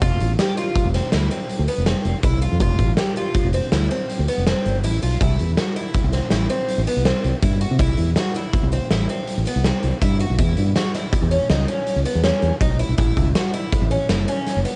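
A picked twelve-string acoustic guitar, fingered electric bass and an oversized, low-tuned drum kit start together in this intricate, driving progressive instrumental excerpt, pushing through 7/4 at 162 BPM with a straight feel over chords moving from F5 to C, E5 and A. The bright, shimmering, octave-doubled twelve-string sits back in the mix with a boxy archtop tone and cassette-tape coloring as it plays arpeggios. The dark, round, punchy bass and the gritty, saturated drums, with their boomy kick and pumping big-room sound, sit up front in a lightly reverberant home cassette recording.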